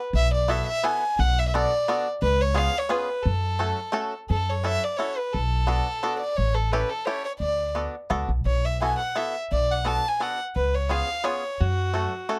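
A swinging 3/4 lilt at 173 BPM drives this whirling, nostalgic musette waltz in F# minor, cut from a longer piece and heard in a dry, close and detailed sound. A woody, growly pizzicato upright bass anchors the low end from 0.1 seconds, while a bright, twangy banjo picked with fingerpicks adds percussive accompaniment. Up front, a single bowed violin carries the melody with a soft attack and an airy, pure, floating tone, a touch boxy, over a harmony cycling through B7sus4, Bm7 and C#7 back to F#m.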